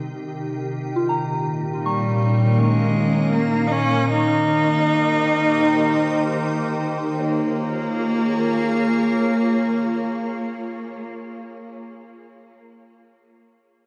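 In a straight 4/4, this serene, melancholic ambient excerpt rests on a soft, full-bodied organ-like pad that fades in over its first 7.2 seconds, holding sustained chords with ensemble chorus and built-in reverb, while a nasal organ-like drone sits in the background. A rich, focused cello with vibrato carries the bowed melody up front through a diffuse delay, and a gentle FM synth bell plays arpeggios dressed in chorus, phaser, shimmer reverb and delay, fading out over that same opening span before stopping at 12.8 seconds. A wet scoring-stage reverb surrounds the whole, as the harmony moves from Cm7 to Bbm7 and F9sus4 before settling back on Bbm7.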